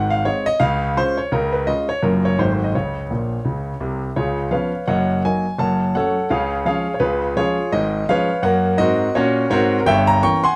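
A clear, intimate concert grand piano with audible action noise and deep bass plays solo stride jazz in a playful, swinging 4/4, with a fill at 3.1 seconds before the second section opens at 4.2 seconds, set up front in a wet club reverb in this short cut from a longer piece.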